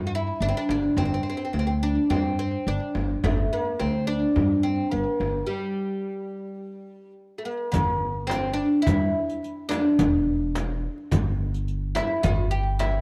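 This Arabic maqam ensemble piece, cut from a longer performance, moves at 106 BPM in a straight 4/4 in G maqam rast, tuned slightly low to A4 = 439 Hz, and its mood is passionate and festive. A bright, fretless oud carries the melody, plucked with a plectrum on double strings for a woody, deep tone, placed up front and touched by a slapback echo. Beneath it, a warm, woody pizzicato upright bass with steel strings sits up front, and a distant frame drum with a warm large-room sound joins at 0.7 seconds. A break arrives at 5.5 seconds, and at 7.7 seconds a new section opens as a crisp, high-pitched metal-shell darbuka played with soft hands enters in the background, together with a riq whose dark jingles sound compressed and saturated. The recording has the dry, close feel of a 1970s-style studio session with only light reverb.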